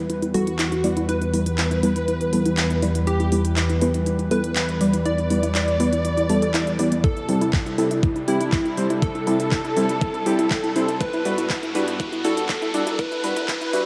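Bittersweet and dreamy, this short cut from a longer progressive house piece moves at 121 BPM in E minor as a steady build-up, with filter sweeps running across the synth pluck and chord stab throughout. A smooth, detuned analog pad sustains chords up front, while a soft, round pluck with chorus and digital delay spins arpeggios and deep, mellow chord stabs fill in the harmony, all breathing with sidechain pumping. A punchy, catchy unison lead carries the melody through dub echo, shadowed by a distant, lush symphonic violin section playing a second line with expressive vibrato in the background. Crisp hats and handclaps from a pop kit tick along from the start, and a knocking electronic kick joins up front at 7.0 seconds as the chords move from Em to C6 and then to Gmaj7, while a background riser climbs from 6.1 seconds. A lush hall reverb and a dark, high-passed production wrap the whole build in a hazy glow.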